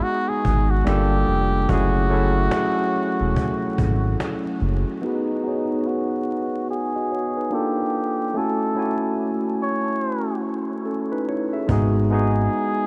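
Lo-fi hip hop at 72 BPM in 4/4 with a swung sixteenth feel, this reflective, hazy excerpt sits in F# dorian and is cut from a longer piece. A cup-muted trumpet carries the melody throughout, its mellow, veiled, breathy tone shaded with light vibrato and a jazz phrasing, softened further by a low-pass filter. Beneath it, a barky tine electric piano plays accompaniment with a bright, clean, up-front character, coloured by cassette tape and a low-pass filter. A woody cajon with faint snares plays until 5.0 seconds and returns briefly at 11.7 seconds, while a smooth, dark synth bass with a sawtooth and ring-modulated edge holds low sustained notes alongside it, up front in the mix. The chords drift between G#m7, Gm7 and F#m7, and a filter sweep runs across the second half from 5.0 seconds. The whole mix is dreamy and soaked in a huge ambient reverb, with vinyl crackle adding to the hazy atmosphere.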